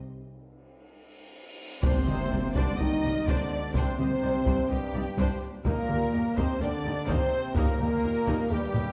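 A dark, warm production set in a moderate scoring-stage reverb opens this heroic, dramatic slice of epic orchestral film score in C minor, moving at 126 BPM in a straight 4/4. It begins with a break, and a huge, dark cymbal swell and impact rises at 1.1 seconds before the full orchestra lands together on a Cmadd9 chord at 1.8 seconds, later moving to Eb. The melody sits with a background violin section, lush and focused with vibrato, joined by an airy, bright flute ensemble with tongued, expressive playing and a second, more expressive studio violin section using vibrato and portamento. Beneath them, a lush viola section carries the accompaniment, while a mellow French horn section, among the most prominent voices, holds sustained chords with a tight trombone section of clear tone in the background. Cellos and double basses anchor the bass, and a taiko ensemble struck with hard sticks drives the rhythm alongside brief, very quiet timpani on calf heads and a very quiet, bright tam-tam, ending on a drum fill at 8.8 seconds.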